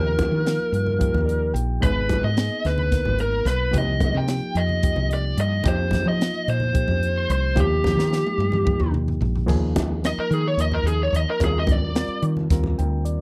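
Electric jazz fusion in a straight 7/8, soaring and funky, with an up-front lead guitar through a small cranked amp carrying the melody in a dark, lo-fi overdriven tone with slapback echo, while a barky, gritty reed electric piano with spring reverb comps and drops in fills. A woody, round fretless bass sits up front beneath a crisp, polished drum kit with a high-tuned snare and punchy kick, which plays a fill from 7.8 to 9.5 seconds, and low-tuned congas with a thick skin murmur distantly in the background. The dry, close 1970s-style studio sound frames the guitar solo that takes over at 9.5 seconds over Ab5/Eb and G7sus4/Eb chords before this short cut from a longer piece ends.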